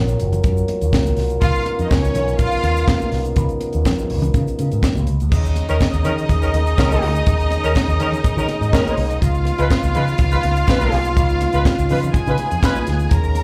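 Danceable and glamorous, this disco excerpt at 123 BPM rides on a tight funk drum kit with bright cymbals and a high-tuned snare, joined up front by a picked electric bass whose envelope filter gives it a warm, amped bite, while high-tuned congas with slapback echo sit in the background and a grainy egg shaker ticks very quietly close by. A close-miked French horn section holds mellow, classical-style chords from the start, and at 1.4 seconds a lush, bowed studio string section adds a focused second line with vibrato. At 5.7 seconds a punchy, distant pop-style horn section begins firing roomy stabs over the D#7sus4 chord, with the harmony later moving to C#9, all heard as a live gig through the venue's PA with light club reverb.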